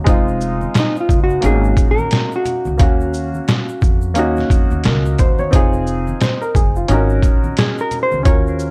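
A gritty, pitched-down sampler-style drum kit sits up front with a thumpy kick and medium-tuned snare, driving this mellow, cool jazz-hop excerpt at 88 BPM in 4/4 with a 60% 16th-note swing and tuning set to A4 = 436 Hz. A dark, worn grand piano with audible action noise and a woody pizzicato upright bass hold down a Fm7, Ab9sus4 and Ebm9 progression, while bright egg shaker and soft-handed congas sit in the background. From 0.8 seconds a clean, fingered hollow-body jazz guitar takes the lead with analog delay, all wrapped in a dark production with light reverb.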